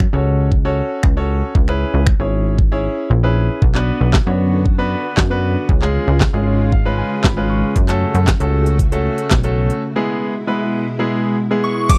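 A dry, close recording in a 1970s studio style opens this upbeat, summery dance-pop excerpt, moving at 116 BPM in a straight 4/4 and cut from a longer piece. Up front, a layered electronic pop kit with a knocking kick, fat snare, crisp hi-hats, handclaps, finger snaps, shaker and crash cymbal drives the track alongside a punchy, funky analog bass whose sawtooth filter pluck pumps with the sidechain. A polished, present baby grand piano carries the accompaniment through a progression from F#m and C#m7 to Bm and C#, with a brief silent gap and a piano fill along the way. From 4.4 seconds a silky vintage string machine adds chorused, sustained chords in the background, also pumping with the sidechain. A break begins at 9.8 seconds over an E chord. At 11.6 seconds a dreamy, detuned FM bell enters with a high melody colored by chorus, phaser and slapback echo, and a grainy tube shaker follows, barely audible, in the final moment.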